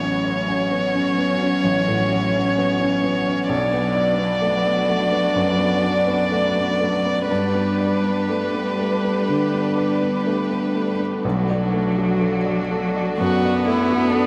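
Neoclassical piano and strings in B minor, reflective and longing, moving at a rubato 60-65 BPM in 4/4 through a short passage cut from a longer piece, with the harmony shifting from F#m/A through Bm and G to Bm7 at 11.2 seconds. Up front, a rich, expressive solo violin carries the melody with vibrato and portamento, while a bowed cello adds a smooth, even second line beneath, both trailed by tape echo. A felt-muted upright piano with a soft, vintage tone and audible action noise supplies intimate accompaniment, as a studio string section holds sustained chords in the background, all soaked in a huge, dreamy ambient reverb.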